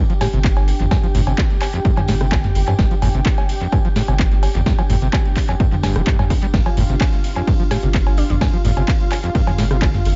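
An overdriven electronic kick drum sits up front in this raw, trippy acid house excerpt at 128 BPM in straight 4/4, punchy and re-recorded in a large room. Beneath it a saturated sine sub bass runs deep and thick from F1 to G2, pumping against the beat. A squelchy, resonant sawtooth acid bass riff with a filter sweep sits further back, gritty with distortion, 12-bit sampler crunch and dub echo. A booming analog drum machine adds a crisp snare, metallic hats, ride, toms, rim clicks, handclaps and cowbell, dry but touched by small-room ambience and dub echo, with a jingly acoustic tambourine tucked behind. Sustained chords come from a smooth, detuned, mellow sawtooth pad with chorus and sidechain pumping, shadowed by a very quiet, warbling, nostalgic lo-fi pad with a dark tone. A woody, round FM pluck with chorus and tape echo appears only briefly, at 0.2 seconds and again at 7.7 seconds, in an echo-heavy mix with little reverb and a rolled-off top end.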